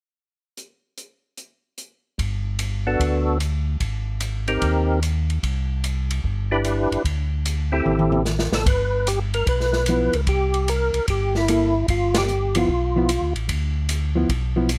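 Soul jazz organ trio in a swinging, greasy groove, where an airy acoustic drum kit with dark cymbals and a boomy kick opens alone before a round, mellow organ bass with slow rotary speaker enters at 2.2 seconds, a fat, percussive organ lead with key click and chorus vibrato carries the melody, and a dark, fingered hollow-body guitar joins at 9.9 seconds, all captured close and dry, with a drum fill and a band accent along the way.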